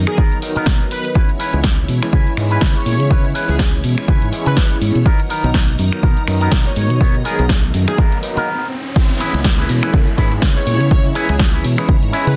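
Filtered disco house at 123 BPM in C# dorian, groovy and sensual, with a swung 16th feel over Bmaj7 and C#m7 chords, every melodic part pumping and muffled under a low-pass filter. An up-front overdriven kick and a punchy analog drum machine of snaps, hats, shaker and clipped snare drive a round, dark fingered bass, while a barky tine electric piano with fast tremolo and phaser, a twangy envelope-filtered guitar riff and a lush string machine in the background fill the harmony. A bold, detuned synth brass melody with chorus and tape echo carries the tune, and a riser from 7.0 s leads through a brief break into the drop at 9.0 s, all in a dense, heavily limited modern master.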